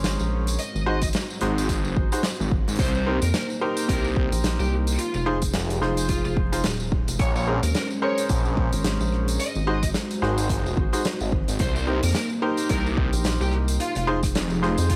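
Glitch hop at 109 BPM in Bb minor with a 16th-note swing, this funky, playful excerpt sets a moody analog pad, bright piano stabs with dub echo, a rubbery square bass, a huge arena drum kit with hi-hat, rim click and snare, and a jingly tambourine from the start, joined by a dark high-gain lead guitar at 0.6 seconds, a punchy electronic kick at 1.0 seconds and a swirling phased saw bass at 1.4 seconds, all over a Bbm9–Ab7–Cm7–Fm7 progression with sidechain pumping on the pad and piano and vinyl crackle in a small room.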